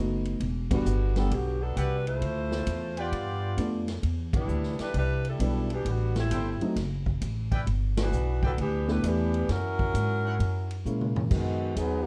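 Warm baby grand piano and a woody, thumpy pizzicato upright bass open this joyful, brassy big band swing excerpt at 132 BPM in G major, soon joined by a roomy drum kit with dark cymbals and a boomy kick, a mellow saxophone section carrying the melody with light vibrato and plate reverb, and a clear trumpet section adding soft-attacked stabs, with a drum fill at 10.9 seconds and a bright trombone section entering at 11.3 seconds.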